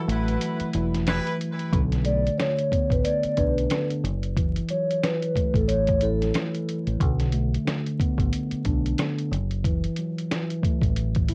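This reflective, dark boom-bap hip-hop excerpt in B minor opens on a break, with a clear horn section playing brief jazz-style stabs that end by 1.3 seconds over a mellow tine electric piano. A deep, round fingered electric bass and a muffled, pitched-down sampler-style drum kit, with a thumpy kick, medium-tuned snare, rim click and hi-hat, set up a swung 91 BPM groove in 4/4. At 2.1 seconds a vibraphone played with soft mallets takes the melody, its ringing, airy tone carrying fast motor vibrato, plate reverb and analog delay, until it stops at 6.3 seconds. The harmony moves between F#m7 and Bm7 while the electric piano, bass and drums continue to the end of the cut. Cassette tape coloring on the keys, horns, vibraphone and drums, along with vinyl crackle and light reverb, gives the track a home-recorded lo-fi haze.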